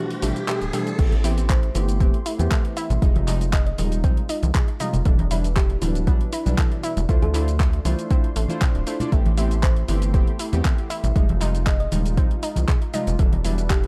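A deep, tape-warm electronic kick sits up front in this hypnotic, smooth deep-house excerpt, alongside a rubbery, hollow square bass with sidechain pumping. A deep mellow chord stab with cassette-tape colour and delay, a smooth detuned analog pad, a nasal analog pluck playing arpeggios and a round, tine-like thumb-piano-style synth pluck carrying the dark melody all shimmer with chorus. Beneath them run a swung drum kit of handclaps, hi-hat, shaker and crash cymbal, close acoustic congas in the background from 1.1 seconds, and a brief electronic riser that gives way to the drop at 1.0 seconds, all in a dry, close sound.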